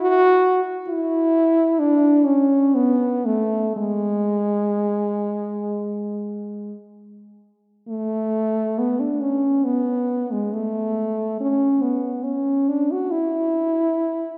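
Serene and nostalgic, this short classical passage for unaccompanied French horn unfolds freely in 4/4 with an expressive, rubato feel. The solo horn carries the whole line from start to finish, its tone mellow with a light vibrato and a smooth top, played in a classical style and kept up front in the mix. Its range stays in a compact middle register, lending the phrases an intimate, singing quality. The instrument sits in a wet church reverb with a long decay, heard from further back in the room, so each note blooms into the surrounding space. The passage moves through two sections, the second arriving at 7.9 seconds, and it is cut from a longer piece, ending at 14.4 seconds.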